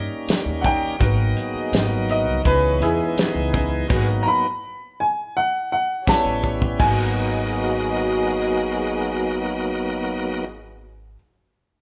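A moderate large-studio reverb surrounds a band playing live in one room on this smoky, soulful fragment of straight-eighth soul blues at 83 BPM in G# minor, moving through chords such as G#m7, C#m7 and A7. A clear, woody upright piano with audible action noise takes the solo through the opening section over a shouting, lightly overdriven tonewheel organ with key click and slow rotary speaker, a dark pizzicato upright bass, and a rich string section bowing sul tasto with light vibrato. The band halts for a stop at 3.9 s, the warm soul kit with tambourine and dark cymbals plays a fill at 6.4 s and falls away at 7.0 s, and the rest carry into a brief second section.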